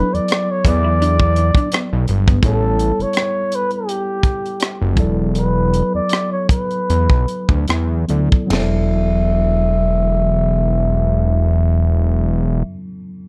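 R&B and neo-soul in E dorian, this smooth, soulful passage from a longer piece moves at a relaxed 71-84 BPM in 4/4 with a light swing on the sixteenths, and its tempo gradually slows through the middle. A breathy, whispered flugelhorn carries the melody up front, mellow and intimate with light vibrato and a soft attack, shaded by a low-pass filter and slapback echo. Beneath it, a worn, slightly out-of-tune tine electric piano plays the accompaniment through its built-in speakers, while a fat, detuned sawtooth analog bass sits up front with a filter sweep running through the opening. A tight funk drum kit in a small room, with dark cymbals, a high-tuned snare and a tight kick, drops out at 8.7 seconds, and a lo-fi, slightly broken-up electric guitar with tremolo adds a second line in the background only for the first 2.4 seconds. The harmony moves from Em7 to A13 to E5 in a warm production with light reverb.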